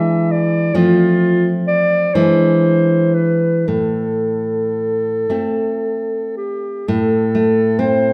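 A slow, rubato 6/8 flow of roughly 36-46 BPM in dotted quarters carries this solemn, elegiac romantic duo in A minor, tuned to A4 = 445 Hz, where a mellow, smooth-topped classical clarinet sings the melody up front between F4 and E5 over a deep, fingerpicked nylon-string guitar accompaniment from A2 to D4, moving through E7, F and back to E7 before settling on Am at 3.7 seconds, all held in a moderate recital-hall reverb across this brief 8.1-second fragment of a longer piece.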